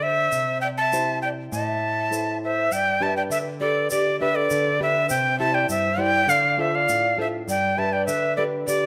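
A close-miked, reedy cane quena carries a festive yet wistful Andean folk melody at 100 BPM in 2/4, with tongued vibrato up front, while a wooden pan flute with chiff adds a rolled-off second line in the background, a dark fingerpicked nylon-string guitar accompanies over C, Am, G and Dm, and a grainy egg shaker enters at 0.3 seconds, all in a moderate recital-hall reverb in this brief excerpt cut from a longer piece.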